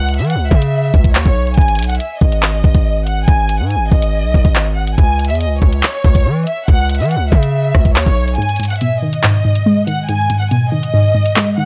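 A heavy, distorted 808-style bass anchors this ominous drill excerpt in a half-time feel, joined by an up-front electronic kit of knocking kick, hi-hat, handclaps and rim clicks, while a lush, bowed violin section carries the vibrato-rich melody through a tape echo. At 8.4 seconds the bass and kick drop out, and a detuned, warbling lo-fi pluck with a dark chorus-treated tone takes over the accompaniment. The dry, gritty recording has a saturated edge that keeps the menacing mood close and raw.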